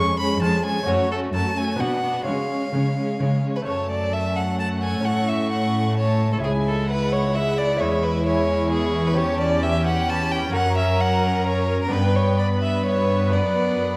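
A wet recital-hall reverb surrounds this stormy, driving excerpt from a baroque-style concerto movement in F# minor, moving at 130 BPM in 3/4. Up front, a clear, focused solo violin carries the melody with vibrato over a smooth, even cello section on the bass, while a rich, expressive violin section also plays the melody in the background, a second violin section bows its own line, and a studio viola section fills out the accompaniment. A delicate, fingerpicked lute with gut double strings sits in the background, as the harmony moves through chords such as F#m, Bm and C#m before reaching a G chord at 11.9 s.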